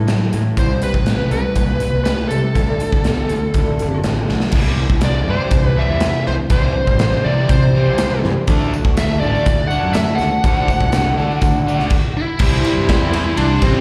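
A sunny, swaggering slice of classic rock in a straight 4/4, cut from a longer piece and heard as a live gig through a venue's PA with recital-hall reverb. A sludgy, double-tracked distorted guitar drives the riff with overdrive and slapback echo, sitting over a fuzzed, round and punchy fingered electric bass. A gated 80s drum kit stands up front with bright cymbals, a medium-tuned snare and a tight kick, marking a fill at 4.3 seconds. From 0.6 seconds a smooth, dark overdriven lead guitar carries the melody through tape echo, while a boxy, very quiet picked acoustic guitar adds swing-style accompaniment underneath. At 8.5 seconds a mellow, reedy electric piano joins in the background, and a jingly tambourine sits close and dry behind it until the band stops briefly at 11.9 seconds before the final section.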